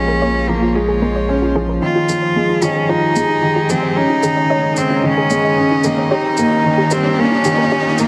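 Intimate, hypnotic piano-and-strings electronica in F minor at 112 BPM, where an up-front, nasal cello melody and a soft, felt-muted upright piano riff with audible action noise and delay sit over distant period-style string quartet chords, a dark, very quiet round pluck arpeggio, a deep sine sub bass that stops at 1.8 seconds, and a small-room electronic shaker from 2.1 seconds, moving through Bbm7, Fm7, Dbsus2 and Eb7 in light reverb as a background riser builds from 3.9 seconds.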